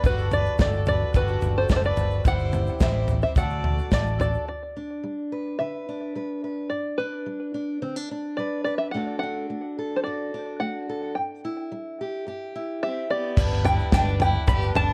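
Indie folk with a nostalgic, anthemic mood, this short excerpt is carried by an up-front, twangy open-back banjo whose plunky, percussive melody runs through the whole passage under a plate reverb. At the start a smooth, clear fiddle with light vibrato plays a second line, while a boxy twelve-string acoustic guitar adds shimmering, octave-doubled accompaniment with audible finger squeak, over amped electric bass, a natural country drum kit with a punchy kick and medium-tuned snare, and a grainy egg shaker in the background. Around 4.5 seconds most of that band drops away, and a bright fingerpicked steel-string acoustic guitar takes over the accompaniment beneath the banjo. The fiddle returns at 12.8 seconds, and by 13.4 seconds the bass, drums, shaker and twelve-string are back for a fuller return of the opening material. The whole recording has the worn, warbling pitch drift of old cassette tape, lending the light reverb a faded, memory-like cast.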